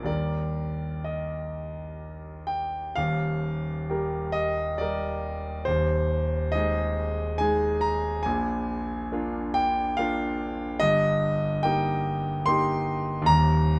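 Set up front in light reverb, a clear concert grand piano with deep bass, a smooth vintage tone and long sustain plays this tender, nostalgic romantic nocturne alone in a rubato 3/4, spanning from its lowest register to high treble, moving into a second section at 3.0 seconds and resting on a high Eb at 13.3 seconds in this passage cut from a longer piece.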